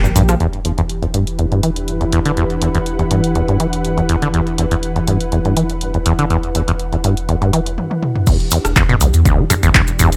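Set in a lightly reverberant space, this driving, raw acid house cut opens on a band accent, with a rubbery, resonant acid bass riff up front (tube-saturated, delayed and pumping) over a thick sine sub bass and a smooth, detuned analog pad whose filter sweeps in the background over an Em7 chord, while a grainy, bright cabasa sounds briefly, close in the background. A punchy, overdriven analog drum machine with handclaps, hi-hat, rim click, toms and crash drives the groove, while an ethereal, airy pad drifts in at 1.3 seconds with ensemble chorus and its own reverb. At 7.8 seconds the groove stops for a drum fill, then at 8.3 seconds the drop lands with an overdriven electronic kick as the cabasa returns.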